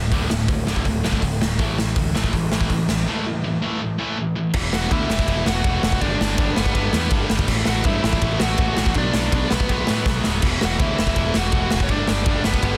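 Energetic and upbeat, this punk rock excerpt charges ahead at 163 BPM in a straight 4/4, cut from a longer piece. Two bright, picked guitars, one overdriven and one tight and distorted, sit in the background playing riffs from the start, while a growling picked electric bass, overdriven and direct and amped, drives the low end beneath them. The raw garage drum kit is up front and saturated, with a punchy kick, a medium-tuned snare, hi-hat, crash and ride cymbals ringing in a bright, pumping stone room, and a short fill at 10.1 seconds. At 4.5 seconds the harmony shifts to a new section, and a biting overdriven lead guitar with a warm edge enters at 4.7 seconds to carry the melody over chords moving through D5, A5, E5, G and Bm. The sound is dry, with little reverb and a dense, heavily limited modern master.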